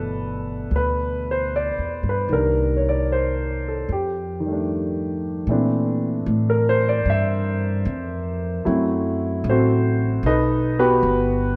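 A warm concert grand piano with deep bass and a woody, thumpy pizzicato upright bass open this intimate, tender swung jazz ballad fragment at 76 BPM in 4/4. Both sit up front, bathed in a moderate plate reverb, while the piano's chords move from G69 through Cm7 and F13 before turning to Bbmaj9#11 at 5.5 seconds and continuing through F#m7b5 to B7b13.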